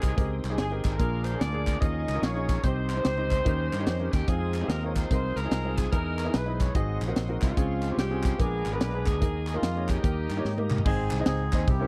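Uptempo gospel in Ab major at 146 BPM with a swung 4/4 feel, reverent and hopeful, where a mellow horn section and a raspy, gritty alto saxophone with vibrato carry the melody over clear baby grand piano, a reedy tonewheel organ with key click and fast rotary, a barely audible French horn section holding chords, punchy fingered electric bass, an airy fusion drum kit with a high-tuned snare and a fill at 10.4 seconds, and distant group handclaps, all in a dry, close 1970s-style studio sound before the music resolves to Ab at 10.9 seconds.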